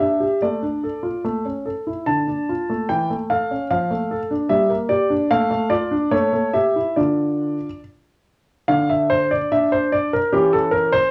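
A classical-period piano sonatina in D minor, dramatic and restless, moving at 69-76 BPM in 2/4 with a rubato feel in this short cut from a longer piece. A clear grand piano plays alone from D3 to A5, sounding intimate and up front with audible action noise and long sustain. Chords shift through D minor, A7 and Em7b5 before an unharmonized passage at 8.7 s, then an Edim7 at 10.3 s, all heard through moderate studio ambience and worn old cassette tape with warbly pitch drift.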